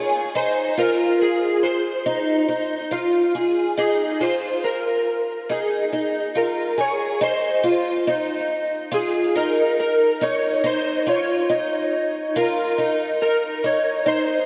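Dream pop at a slow 70 BPM in 4/4 with a straight feel, this short excerpt in Ab major drifts with a dreamy, ethereal mood. A picked twelve-string acoustic guitar plays arpeggios throughout, its bright, shimmering, octave-doubled tone carrying the snap of fresh strings and a boxy archtop body. Over it, an electric slide guitar carries the melody across the full 14.5 seconds, sounding slightly broken-up and warm. Both guitars sit up front and share ensemble chorus and delay. The harmony rests on Ab5 before moving to a rootless Ab69 over Eb at 7.2 seconds, opening the second section. The whole mix is soaked in a lush hall reverb with a long three-second tail, giving it a hazy, floating space.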